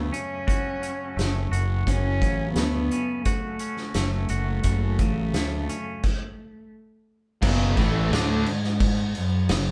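Dark and brooding, this quiet-loud alternative rock passage in F# minor moves at 86 BPM in a straight 4/4. A woody, bowed cello carries the melody with vibrato over a growly fuzz bass, a loose, roomy drum kit with a fat snare and dark cymbals, and twangy, clean guitar arpeggios with tremolo that stop at 6.0 seconds. After a stop, the louder section arrives at 7.4 seconds with a biting overdriven guitar riff joined by a high-gain distorted guitar riff sitting in the background, all in a band-in-one-room sound with moderate studio reverb.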